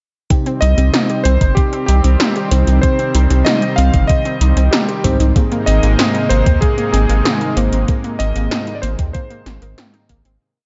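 A driving 95 BPM synthwave groove in straight 4/4 opens at 0.3 seconds, built on a thumpy, tape-warm electronic kick held up front and an 80s machine backbeat of gated snare and metallic closed hats, both re-recorded in a small room. Beneath them a round, deep analog bass with a nasal edge gallops in sixteenth notes from 0.6 seconds, pumping against the kick, while a lush, warbling unison pad of detuned sawtooths sustains chords in C minor with chorus and the same pumping. In the background a bright analog pluck runs an eight-step arpeggiated sequence through chorus and delay, and an FM electric piano layered with a soft pad adds mellow, dreamy close-voiced stabs, held chords with syncopated pushes under tremolo. On top, a vintage electric grand piano with a clangy low end plays a motif-based melody in period phrases through digital delay. The harmony moves from C minor to A-flat add9 at 5.4 seconds, and the cinematic, dark-toned piece, lightly reverberant, fades out from 7.0 seconds to its close at 10.4.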